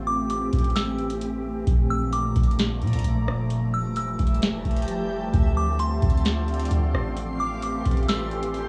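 Recorded at home on cassette in a small room, this cut from a longer atmospheric cloud-rap track drifts dreamily and blissfully at 131 BPM in a half-time 4/4 feel, moving through Am7, Bbmaj7, Fmaj9 and Dm7. A glassy, ethereal FM pad with ensemble chorus and sidechain pumping sits up front beside a booming analog drum machine with a deep kick, crisp snare and metallic hats, while a soft, round 808-style bass holds the low end. A delicate, tinkling tine bell with tape echo adds a vintage warble on top, and from 2.2 s a reversed, detuned granular texture drifts in.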